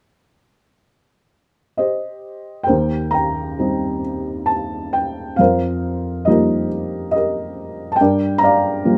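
A felt-muted upright piano carries this brief, dark and melancholic fragment of a lyrical solo classical piece, entering at 1.8 s and playing alone with a soft, boxy, intimate tone and short sustain, sitting up front in a light reverb. At a slow 68 BPM in 3/4 with a rubato feel, it spans a range from low Eb2 to Bb5, with a new section arriving at 2.7 s as the harmony moves from Eb6 through F9sus4 to Gm7.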